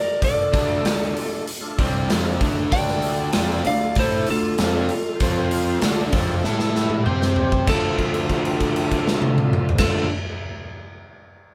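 A smoky, brooding slice of blues rock and southern rock cut from a longer piece, played by a band live in one room at a straight 97 BPM in D minor with light reverb. A slightly broken-up, compressed lead guitar carries the melody from the start while a dark, distorted second lead guitar sits in the background beneath it. A big acoustic drum kit with bright cymbals, a tight kick and a medium-tuned snare sits up front, joined at 0.5 seconds by a double-tracked, picked crunch guitar riff and a growly, punchy fuzz bass. Behind them a thick, gritty tonewheel organ holds sustained chords through a slow rotary speaker and chorus vibrato, its key click audible. The harmony moves from Dm through F5, A5 and C5 power chords before a drum fill from 6.4 seconds leads into a new section at 7.7 seconds, where a held note rings over a Dm7 chord.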